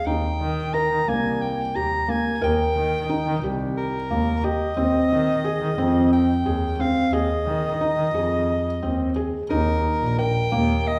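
Shimmering and hopeful, this short contemporary chamber piece, cut from a longer work, moves in a straight 7/8 at 178 BPM counted in eighths, in Eb major. A soprano saxophone carries the melody from the opening as the solo voice, its tone clear and up front, with light vibrato and pop-style phrasing. Beneath it, a felt-muted upright piano plays soft, mellow arpeggios with an intimate, warm character, and the mechanical noise of its action can be heard. A single bowed double bass holds the low end, clear, focused and biting with a smooth top and its own vibrato, sitting close to the listener. The harmony rests on Eb, shifts to Ab over Eb at 4.8 seconds, and returns to Eb as a new section begins at 9.5 seconds, with the ensemble placed in a recital hall whose long, wet reverb is heard from further back in the room.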